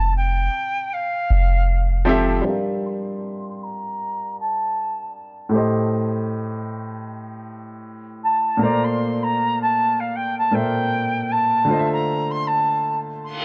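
A reedy jazz flute carries the melody through this moody, sensual contemporary R&B excerpt. Its pure, vibrato-laced tone is tongued, sits high and somewhat distant, and passes through a low-pass filter. Underneath, a deep, round 808-style bass opens the passage, soft and dark with a fast attack, then decays and drops out early. A clear, polished baby grand piano enters at 2.0 seconds as accompaniment, also low-pass filtered, moving from Fmaj9 through Gm7, Am7b5 and Bbmaj7 to Dm9 over a gently swung sixteenth-note feel. A filter sweep runs from 2.5 seconds to the end, and an electronic reverse cymbal appears at 13.3 seconds, all captured in a dry, gritty sound with little reverb.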